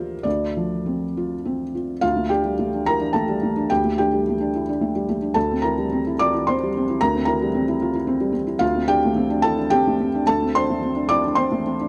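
Melancholic and intimate, this short cut from a longer neoclassical minimalist piece features a solo felt-muted upright piano, soft and mellow with audible action noise and an up-front presence, playing rubato in 3/4 at 109 BPM across a range from D2 to D6 in light reverb, moving from Dm7 through Gsus2/D and C7/D before settling back on Dm7 at 8.6 seconds.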